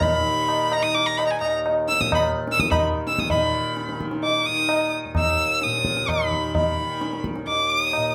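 Set in a 7/4 cycle at 129 BPM with a straight feel, this brief fragment of a longer Hindustani classical performance carries a devotional, meditative mood. A single bowed violin carries the melody up front, its clear, focused tone marked by vibrato and a slapback echo as it sings in a high register between Ab5 and Fb6. Beneath it, a softly plucked tanpura holds a mellow, buzzing drone from Eb2 to Eb3, sitting quieter in the mix with a shimmering glow. The tabla, low-tuned and ringing, sounds distant, as if heard across a large room, and keeps time for the full 8.1 seconds alongside the other two parts. The music shifts into a new section at 3.3 seconds, and the close, detailed microphones and moderate studio reverb give the whole a clean, intimate presence.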